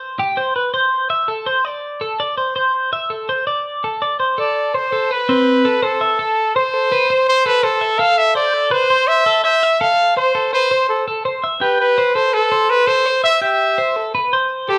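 Wistful yet bright, this rock excerpt moves at 166 BPM in an uneven 5/4 with a straight feel, centred on F lydian. A clean, compressed twelve-string electric guitar opens alone at 0.0 s, picking arpeggios up front over a Cmaj7 with its third omitted that shifts to A minor. At 4.4 s a clear, close-miked trumpet takes the solo melody in a pop style, its vibrato sitting up front and a touch louder than the guitar. The harmony drops away briefly under the horn before settling on a rootless Fmaj7 and returning to Cmaj7, with both parts carrying on to 14.8 s. The band plays live together in one large studio, and a moderate reverb gives the sound a sense of open space.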